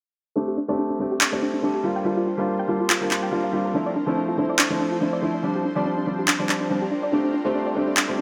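A felt-muted upright piano, soft and intimate with a thin felt tone and short sustain, sits up front in this lush, playful future bass excerpt, its accompaniment colored by tape echo and a filter sweep over a half-time, swung feel. A round, dark pluck traces arpeggios through chorus, tape echo and its own filter sweep, while a shimmering, ethereal pad with a warbling octave-up sheen enters at 1.0 seconds in the background, also filter-swept. Electronic handclaps join up front at 1.2 seconds as the chords move from F69 through C7sus4, Dm9 and Bb69 back to F69, all within light reverb.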